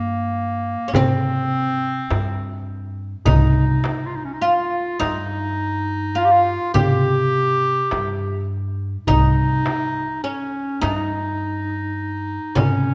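Bathed in a wet scoring-stage reverb, this longing, hypnotic Turkish makam ensemble excerpt moves at 103 BPM in 10/8 in C makam kurdi: a woody, plectrum-plucked fretless oud carries the melody, a bright classical-style clarinet traces an up-front second line, and a thumpy gut-string upright bass is plucked pizzicato below, while a crisp, saturated metal-shell darbuka and a small, close and dry frame drum, entering at 0.9 seconds, sit in the background.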